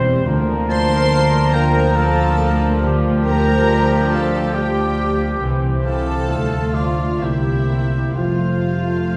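A serene classical passage in a rubato 3/4 opens with ringing, fingerpicked harp arpeggios over soft-attack, sul tasto violas, cellos and an up-front double bass section, along with mellow trumpet stabs and tight, distant trombone chords, before a rich, lightly vibrato violin section takes the melody at 0.7 s, joined by a second violin line, a roomy oboe, a very quiet clarinet and background French horn chords, in a reverberant recital hall heard from further back.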